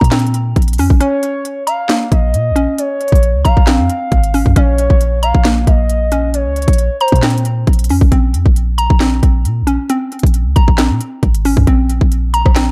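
Dark and melancholic, this trap-style hip hop fragment moves in a heavy half-time feel over a single Bbmadd9 harmony. A hollow, bouncy square-wave pluck carries arpeggios throughout, its detuned tone edged with a noise layer and softened by chorus and delay. Beneath it, a clean 808-style bass booms deep and round, its sine-like notes hitting fast and decaying, sitting up front alongside an electronic drum kit of hard-clipped kick, sharp snare, crisp hats, handclaps and rim clicks. From 1.0 to 7.2 seconds a smooth, gliding portamento lead adds a second line high above, sustained with vibrato, chorus and delay. A brief break falls between 1.0 and 1.9 seconds, and the whole sits in a dark, digital ambience with a warm production.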